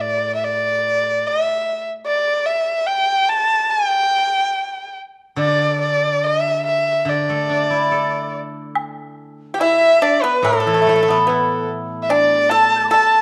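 A bowed erhu opens this graceful, pastoral Chinese chamber piece, sitting up front with an earthy, rich tone, light vibrato and sliding portamento as it carries the melody in a free, rubato pulse. Beneath it, a steel-string zither plucked with fingerpicks supplies a ringing, silvery accompaniment. At 8.8 seconds a close, dry woodblock joins in the background. The pipa follows at 9.5 seconds with a bright, percussive second line, and at 9.6 seconds a very quiet bamboo dizi adds a distant, hollow straight tone with a buzzing membrane and crisp attack. A moderate recital-hall reverb and a dark production frame this brief passage, which is cut from a longer piece.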